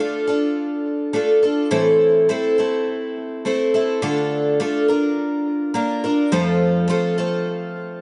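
A picked twelve-string acoustic guitar plays alone, up front and shimmering with octave-doubled strings and an analog delay, in a reflective, dusty rock excerpt at 104 BPM in D minor that moves through Dm, Am, Bb and F over 8 seconds, set in a moderate studio reverb with a dulled top end.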